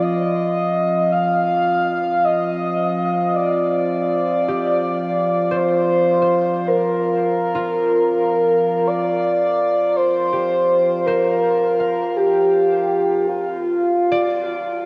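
In an unhurried 3/4 at 54 BPM with a straight feel, this melancholic, serene ambient excerpt sets a breathy, flute-like synth lead with vibrato up front, drenched in lush chorus, 12-bit sampler grit and diffuse delay, over a sawtooth analog drone with evolving pulse-width movement that fades out across the clip, while a pure, glassy glass harmonica shimmers alongside and a mellow, fingerpicked concert harp enters at 4.5 seconds with ringing background arpeggios through its own delay, all moving from F7(no3) to Gm7/F inside a long hall reverb and a worn, warbling cassette tape haze.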